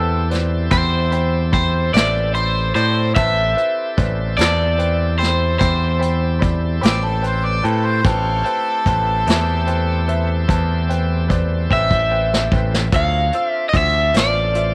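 Set in a small room's ambience, this brooding, mournful slow blues in A minor moves at 49 BPM in 12/8, with an overdriven semi-hollow guitar carrying the melody up front over a woody upright piano, a lightly overdriven tonewheel organ with key click holding chords through a slow rotary speaker, a direct picked electric bass and a vintage brush kit with a tight kick, while a distant harmonica with scooped notes and light vibrato adds a second line from 6.8 to 10.5 s before a drum fill leads the harmony from Am7 to Dm7 at 12.9 s.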